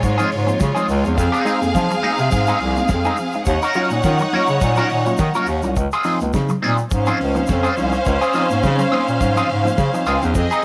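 A lush, clear symphonic string section sits up front with focused vibrato and a smooth top, carrying the second line through this joyful, danceable disco excerpt in Db major at 105 BPM, with a light 16th-note swing. Beneath it, a bass clarinet plays the bass part in a classical style, its warm, smooth-topped tone placed prominently in the mix. A bright, twangy electric guitar at the edge of break-up adds picked, compressed accompaniment through a wah, while a reedy, barky electric piano enters at 0.2 seconds, lightly overdriven with a fast tremolo and heard through its built-in speakers. The acoustic drum kit is dark and smooth, with a tight kick, a medium-tuned snare and hi-hat recorded in a small room, its top rolled off. High-tuned vintage congas played with soft hands and a grainy, close, dry tube shaker sit in the background, and a moderate spring reverb colours the mix as the chords move from Dbmaj7 through Fm7 and Ebm7 and back to Dbmaj7 at 5.8 seconds.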